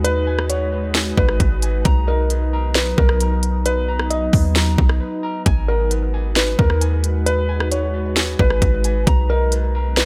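The mix is dry and close, with little room sound, and the drums and bass sit up front in this short excerpt cut from a longer atmospheric cloud-rap track. It moves at 133 BPM in 4/4 with a half-time feel, tuned to A4 = 444 Hz, and the mood is floating and blissful as the harmony shifts between G#m7 and Bmaj7. A trap kit of hard-clipped kick, sharp snare, crisp hi-hats and rim clicks carries a tape-warmed edge, while a clean, sine-like 808-style bass gives deep, boomy notes with a fast attack that decay away. A glassy FM pad holds dark, ethereal chords with a slow attack and long release, thickened by ensemble chorus and its own reverb, with sidechain pumping. On top, a felt-muted upright piano plays a soft, intimate melody with audible action noise through a low-pass filter and tape echo, and a mellow electric guitar adds clean, fingered arpeggios through the same filter and echo. A brief break falls between 5.0 and 5.5 seconds.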